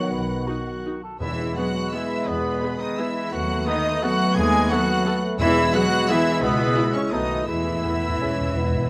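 Sweeping and festive, this orchestral classical passage in E major moves in a rubato 3/4 at roughly 157-189 BPM, cut from a longer piece. A clear violin section carries the melody with light vibrato, while a second, lusher violin section, a bright vintage-toned clarinet and a dark, distant cor anglais weave supporting lines in the background, joined by a large, airy flute ensemble heard distant and very quiet. Beneath them, a mellow close-miked bassoon and a very quiet viola section fill in the accompaniment, the French horn section holds mellow sustained chords, and a punchy but distant trumpet adds stabs. An expressive studio cello section and a far-off double bass section anchor the bass as the harmony moves from B through E, B7/D# and C#m before settling back on E. Timpani with soft mallets on calf heads give a round thump at 1.2 seconds, return at 5.4 seconds and close with a fill from 7.5 seconds, all set in a moderate recital hall reverb.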